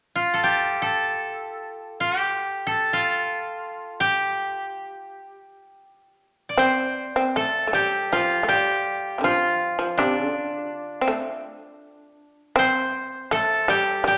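Japanese traditional chamber music, calm and austere, moves in a free, rubato 4/4 in this excerpt from a longer piece. The koto carries the melody from the start, its fingerpicked tone dry and woody and set up front. At 6.6 s a fretless shamisen enters below it as a second line, plectrum-plucked with a bright, buzzing, percussive edge, while a moderate recital-hall reverb gives the pair a sense of space.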